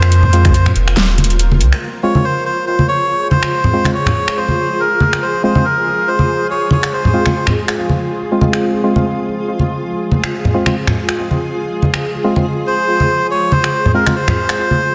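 A reedy, breathy melodica carries the melody up front through its dub echo, falling silent at 7.5 seconds and returning at 12.7 seconds in this cavernous, heavy slice of half-time deep dubstep with a swung feel. It opens on a drop where a round, mellow sub bass and a knocking electronic kick sit under a blurred, evolving granular pad that holds chords throughout. Hollow, dark organ stabs with chorus and echo, hard-handed congas, and a tape-touched kit of finger snaps, metallic hi-hats and a huge, softly clipped snare fill a dense, loud mix bathed in lush hall reverb.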